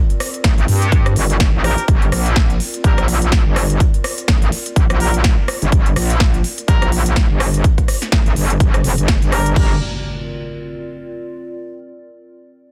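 A metallic wobble bass snarls through this swaggering, gritty bass house excerpt, its aggressive, distorted FM tone pushed up front with overdrive, chorus and sidechain pumping, while a filter sweep runs across it until 9.6 seconds. Alongside it, a punchy, tape-warm electronic kick drives a swung 4/4 groove, joined by a big-room dance drum kit of crisp hats, punchy snare, rim click and crash cymbal that sound re-recorded in a large room. From 1.6 seconds, a distant, roomy horn section adds pop-style stabs with light vibrato, filtered, pumping and trailed by digital delay, and it gets its own filter sweep over the same span. A warbling, lo-fi pad sits dark in the background throughout, detuned and chorused with its own reverb and a nostalgic haze. At 9.7 seconds the drums and horns stop and an electronic impact hits, ringing on with the pad to the end, all held in a dense, heavily limited modern master.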